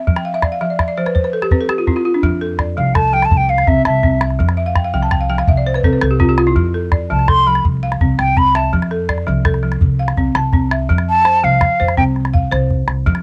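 This West African traditional piece for strings and xylophone has a hypnotic, warm mood, moving at 111 BPM in dotted quarters over a straight 12/8 in F lydian. A woody, buzzing balafon struck with hard rubber mallets opens with dark, smooth arpeggios and fills, joined almost at once by a small, close calabash. A thumpy pizzicato upright bass with steel strings enters at 2.2 seconds, and a breathy concert flute follows at 2.8 seconds with a tongued, expressive melody coloured by vibrato and rolled-off highs. The harmony rocks steadily between F and C, with brief turns through richer chords such as Cmaj13 and a closing Csus4. At 10.9 seconds the music shifts into a short new section where the flute takes a solo turn, while all four parts sit up front in a moderate booth ambience with the character of a home cassette recording, cut from a longer piece.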